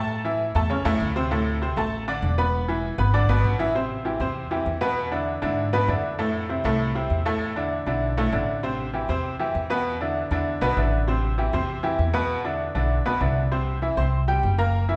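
Salsa in A minor at a brisk 197 BPM in straight 4/4, fiery and passionate, cut from a longer piece. A bright, slightly detuned upright piano carries the accompaniment throughout, its worn, intimate tone sitting up front with audible action noise and a short sustain. Beneath it, a pizzicato upright bass on steel strings gives a dark, growly, thumpy low end across the full 15 seconds. The two play live together in one large studio, surrounded by a wet reverb with a 1.4-second decay. The harmony moves through chords such as Am7, E7 and Fmaj7, then alternates between Am7 and E5 before landing on C at 13.5 seconds.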